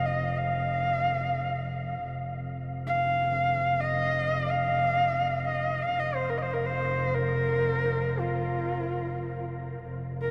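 The recording sits in a vast, echoing space, with a huge, wet reverb whose tail hangs for about 9.2 seconds around two players placed up front. This is Mongolian folk music in free time, tuned to A4 = 441 Hz, and its mood is windswept and vast. A rich, husky horsehead fiddle carries the melody from the opening moment to 10.3 seconds, moving between F4 and F5. Its bowed horsehair strings speak with a soft attack, and its line is expressive, marked by vibrato and portamento. Beneath it, a single warm, bowed double bass holds a focused drone on F1 for the same span, with a smooth top and its own vibrato. The piece is cut from a longer work and stays within one section.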